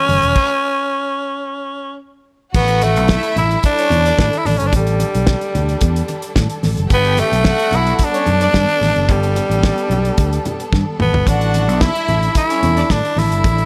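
A straight 4/4 disco groove at 110 BPM drives this danceable excerpt, with a damped 70s drum kit of tight kick, fat snare, hi-hat, toms and crash setting the pulse alongside a punchy, amped fingered electric bass sitting up front. After a brief stop near the opening, the groove returns as a rich studio violin section enters at 2.5 seconds with a smooth, lush second line high above. A raspy, gritty tenor saxophone carries the melody in a bright pop style, while a symphonic string section holds soft-attack sustained chords underneath, and very quiet, low-tuned congas with a thick-skinned, vintage tone add percussion. The harmony moves from F#m7 through A7sus4 to Gmaj9 and back to A7sus4, with a drum fill at 10.7 seconds leading into the final chord. Light reverb gives the dry drums and close, expressive strings a modest sense of space.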